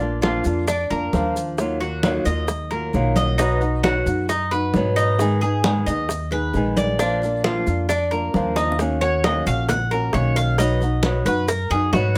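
Latin Cuban son in the guajira vein at 133 BPM in Eb minor, this sultry, nostalgic excerpt sets a fingerpicked flamenco guitar, a mellow, metallic Cuban tres picking arpeggios on double strings, and a woody, thumpy pizzicato upright bass up front over background congas with a bright, damped skin, tight high-tuned bongos and grainy maracas, with light reverb and close, detailed microphones, until a drum fill at 8.6 s gives way to a tres solo from 8.8 s.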